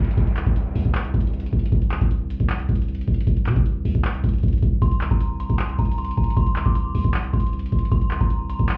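A booming analog drum machine with a deep kick, metallic hats and handclaps drives this eerie, brooding half-time trap excerpt at 155 BPM alongside a long, sine-deep 808-style bass, while a brief electronic downlifter ends by 1.7 s and a ringing, inharmonic FM bell with chorus, low-pass filter and slapback echo enters at 4.8 s, all heard muffled as if through a wall with club reverb and vinyl crackle.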